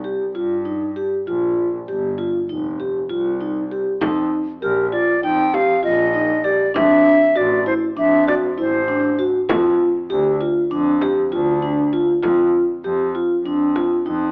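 A bright, airy baroque flute carries the melody from 4.6 to 9.2 seconds over mellow, ringing soft-mallet vibraphone arpeggios and a distant, bowed double bass with smooth vibrato, while a deep frame drum struck with hard hands joins at 4.0 seconds in this pensive, hypnotic contemporary chamber piece in 9/8, heard through light reverb and an AM radio sound.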